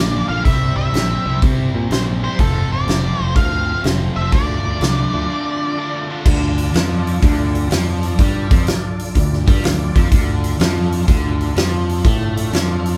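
A dark octave-fuzz lead guitar carries the melody for the first 6.1 seconds of this smoky, heavy blues rock and southern rock excerpt in D minor at 124 BPM with a swung feel, riding over a punchy, up-front big rock drum kit with bright cymbals and a fat snare, a growling overdriven fingered bass, a crunchy, double-tracked picked guitar riff, and a gritty tonewheel organ holding sustained chords through a slow rotary speaker with key click in the background, the band playing live in one room with a large studio reverb.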